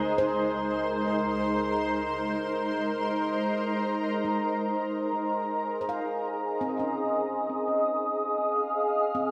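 Steeped in a wet plate reverb and heavy echo, this luminous ambient fragment floats in free time, led by an up-front, shimmering pad of detuned, granular sustained chords with an octave-up sheen, chorus and long release, which takes on a filter sweep from 3.6 seconds. Beneath it, a dark, woody bowed double bass section hums lushly with vibrato in the background, and a very quiet, glassy harmonics texture drifts with calm overtones above, both ending by about 3.6 seconds. From 0.2 seconds a meditative handpan of nitrided steel rings out arpeggios with sharp finger strokes, its tone trailing through an analog delay.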